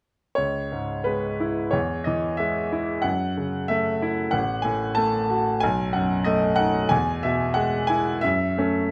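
Stormy yet bittersweet, this short excerpt from a romantic character piece for solo piano moves in a flexible, rubato 2/4, its harmony shifting from C# minor through Emaj7, F#m7 and B7 to E before settling on F# minor. The bright grand piano sits up front with a brilliant, smooth, vintage tone and long sustain, ranging from A1 to A5 between 0.4 and 8.9 seconds, set in light reverb.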